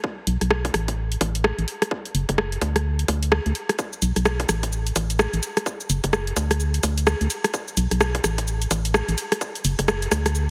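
Sunny, soulful two-step UK garage at 128 BPM with a 61% swing on the 16ths, this short build-up cut from a longer piece opens on a punchy, overdriven electronic kick drum re-recorded in a large room. At 0.3 s an up-front house kit of cabasa, bright hi-hats and rim clicks joins, also overdriven, alongside a dark, hollow FM bass with an organ-like, percussive fast attack that decays across its low range. A moderate plate reverb and a heavily compressed, radio-like sound colour the mix.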